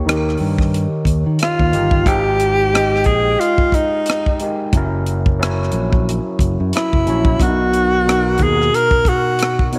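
A lightly swung sixteenth-note groove in four sets the pace for this smooth, introspective neo-soul R&B passage, cut from a longer piece. The tight funk drum kit sits dry and up front, with hi-hat, a tight kick and rim click sounding airy and polished. A fingered electric bass, bright and growly with a direct, amped punch, anchors the low end until it drops out at 8.7 seconds. An overdriven tine electric piano comps throughout with a barky, gritty combo-amp bite and a phaser shimmer, moving through D#7, G#maj7, F#7 and Bmaj7. At 1.4 seconds a close-miked tenor saxophone steps forward with a jazz-style solo, its breathy subtone and vibrato remaining clear. A light studio reverb gives the mix a modest sense of space.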